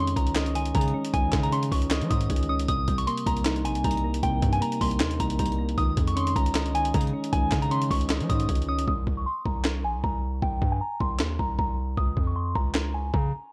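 A soft, pure FM synth bell carries the melody over round, tremolo-tinged electric-piano-like keys and a punchy, heavy 808 bass, opening this menacing, eerie half-time trap excerpt cut from a longer hip hop piece. A compressed, gritty sampler-style breakbeat kit sits up front with a thumpy kick, high-tuned snare, hi-hat and handclaps, while the whole mix wears the warbly pitch drift of worn cassette tape with little reverb. At 8.9 seconds the keys drop out for a break, leaving the chorused, phased bell, bass and drums to carry on until the bell closes the excerpt at 13.5 seconds.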